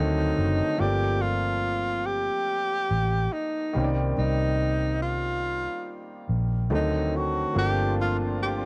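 A breathy, whispered tenor saxophone sings a soulful, smooth, swung neo-soul R&B melody up front with vibrato and scooped notes, over a clear, intimate concert grand piano with audible action noise and a dark, round, punchy foam-muted electric bass, the sax and piano both carrying a cassette tape colour in this home cassette recording made in a booth with moderate ambience, and a mellow, very quiet horn section adds stabs at 7.5 s in this short cut from a longer piece.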